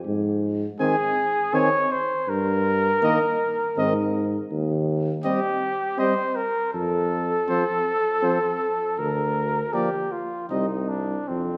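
A dark, lightly vibrato second trumpet sits up front with a smooth top in this grave, solemn classical brass quintet fragment at 80 BPM in a rubato 3/4. A vintage-sounding tuba anchors the bass from 0.1 s, and at 0.8 s the soft-attack, warm lead trumpet enters with a close-miked trombone and a clear French horn set in the background, moving through Ab, Cm/Eb, F and Bb/D to a Cm close before the lead trumpet, horn and trombone stop at 10.7 s while the second trumpet and tuba carry on to the end, all bathed in a wet concert-hall reverb.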